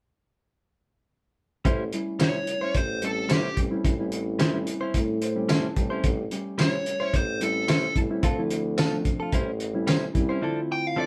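A straight-eighth 4/4 groove at 110 BPM, with only a faint swing on the sixteenths, drives this mournful, smoky soul blues fragment, cut from a longer piece. The cloth-damped drum kit sits up front with a thuddy, muffled character, a fat snare, a tight kick, hi-hat and tambourine, its gritty, saturated sound rolled off at the top like a small-room lo-fi take. A tuba carries the bass with vibrato and scooped notes, while a clean, compressed electric guitar recorded direct punctuates the changes with picked stabs from 1.6 seconds. A reedy, lightly overdriven electric piano heard through its built-in speakers fills in the accompaniment and steps forward with a fill at 4.9 seconds. Above it all, a dark, smooth overdriven lead guitar picks the melody up front, as the band plays live in one room with moderate studio reverb over A7#9 and Dm7 harmony.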